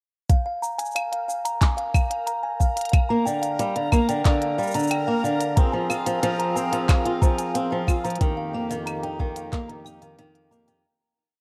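Wistful and intimate, this short folktronica piece at a gentle straight groove sets a soft, up-front electronic kick and a crisp, clicking found-sound kit of hats, shaker, claves and claps under a delicate, slightly out-of-tune music box looping through delay, a reversed, dreamy swelling texture held high in the background, a boxy fingerpicked swing-style acoustic guitar entering at 3.1 seconds with a looping arpeggio, and a reedy, breathing hand-pumped harmonium joining on sustained chords at 5.6 seconds, all within a dark, lightly reverberant production that fades out from 7.3 seconds.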